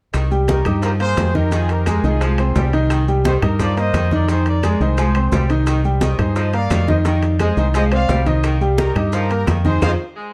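A deep, round, punchy fingered electric bass drives this fiery salsa cut in C minor at 174 BPM, up front beside a brilliant grand piano with audible action noise, while a clear trumpet section with tape echo carries the melody over a bright saxophone section, low-tuned congas, high-tuned bongos, ringing metal-shell timbales, woody claves and grainy maracas, cycling between Cm7 and Fm7 in a dark, moderately reverberant mix before a band accent at 9.8 seconds.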